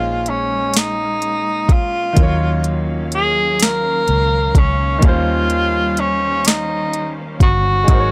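A slow six-eight R&B groove at 42 BPM in 6/8 sets a sultry, late-night mood in this short excerpt cut from a longer piece. The smooth R&B drum kit enters at 0.3 seconds, up front and produced, with a soft kick, sharp snare and smooth hi-hats, while a vintage muted fingered electric bass sits dark and round beneath it. A clear concert grand piano carries the accompaniment, and a lush studio string section holds sustained chords in the background with even, bowed vibrato. Up front, a warm tenor saxophone plays the solo melody in a jazz style, with light vibrato and scooped notes, though its tone sounds distant and roomy. The chords move from Bbm11 to Ebm9 at 2.2 seconds and to Eb13 at 5.0 seconds, all captured in a dry, gritty recording with little reverb.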